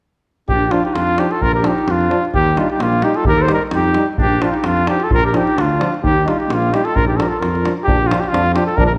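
At 0.5 s a cornet with a smooth top carries the melody up front, joined by a bright clarinet second line in the background, a mellow, distant tuba bass with light vibrato, and a deep davul, launching this virtuosic, exuberant Balkan brass band fragment in Bb major at 130 BPM in 2/4. Just after, at 0.7 s, a euphonium with vibrato and a close-miked trombone add soft accompaniment behind them, the winds all in a classical style over chords moving between Bb and Eb. A moderate recital hall reverb surrounds the ensemble, the clarinet drops out at 7.8 s, and the passage ends at 9.0 s as a section cut from a longer piece.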